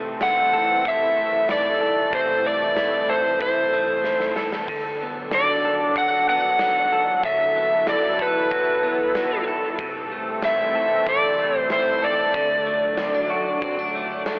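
Dreamy and ethereal, this dream pop excerpt in D mixolydian moves at a straight 94 BPM in 4/4, with a lush, detuned sawtooth pad holding slow-attack chords and a clean, scooped electric guitar picking chorused arpeggios through tape echo over an Am/C to D6 progression. Up front, a dark, overdriven slide guitar carries the melody with its own tape echo, while a huge arena drum kit with punchy kick, bright cymbals and tambourine sits in the background and plays a fill from 4.0 to 4.7 seconds. The whole mix has a telephone-like filtered sound in a light, small-room reverb.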